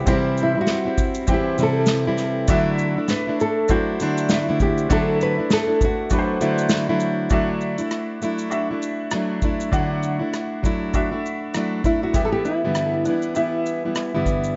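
Carefree and easy-going, this acoustic pop excerpt at 99 BPM in a swung 4/4 sets a dark, small-bodied fingerpicked nylon-string guitar melody with delay, which rests at 6.7 seconds and returns at 11.9 seconds, over a full-bodied fingerpicked jumbo steel-string guitar with fresh strings, a clear, intimate grand piano with audible action noise and subtle chorus, and an airy small-room drum kit of punchy kick, rim click, shaker and medium-tuned snare played with bundle sticks, all set in a dreamy, reverb-soaked mix of moderate plate reverb as the harmony moves from C to Dadd9 and lands on G6.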